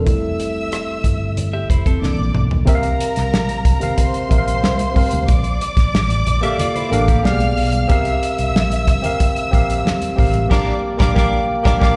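This excerpt sits in a straight 4/4 groove at 92 BPM, a lush 1970s-style soul piece with a smooth, cinematic mood, its chords moving from Fmaj7 and C9 through C7sus4 and Gm7. A worn, slightly out-of-tune tine electric piano, clean through a combo amp and up front with subtle chorus, is featured at the start, and a drum fill lifts the band into the next section at 2.7 seconds. The soul drum kit is tight and up front, with dark cymbals, a medium-tuned snare and a rolled-off top in a pumping room, while a dark, round, foam-muted fingered electric bass holds the low end. A lush bowed string section carries a second line with vibrato and a smooth top, touched with tape echo, and very quiet, bright congas with thin skins add close percussion. A bright, twangy, compressed electric guitar picks a riff in spring reverb, returning at 6.4 seconds, and the band hits an accent from 10.5 seconds, with the whole mix heard as a live gig through a venue PA in recital-hall reverb.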